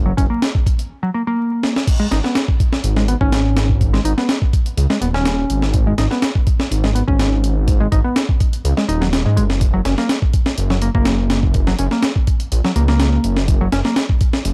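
Funky and swaggering, this breakbeat excerpt at 124 BPM in G# minor pairs a deep, rumbling detuned saw bass with a round, overdriven picked electric bass riff under tape echo and a compressed, sampler-style kit with a thumpy kick and high-tuned snare, all in a dry, gritty recording dusted with vinyl crackle, where a short break and drum fill at 1.6 seconds lead into a drop at 1.9 seconds that rides a G#5 chord before returning to F# at 9.6 seconds.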